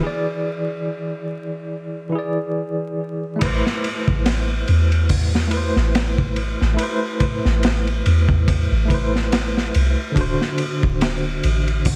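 A swung sixteenth-note groove in four underpins this hypnotic, brooding trip hop piece, cut from a longer track. The tine electric piano opens alone as a break, its clean tone carrying tremolo and tape echo over an E7 chord. At 3.4 seconds, as the harmony moves into Amadd9, a crunchy breakbeat kit arrives up front, its punchy kick, medium-tuned snare and dark cymbals saturated with vintage 12-bit sampler grit and a rolled-off top. Alongside it comes a soft 808-style bass, round and sine-like, with a fast attack and decaying notes sitting deep in the low register. The harmony shifts to D7 at 10.2 seconds, and a small room ambience with vinyl crackle frames the sound throughout.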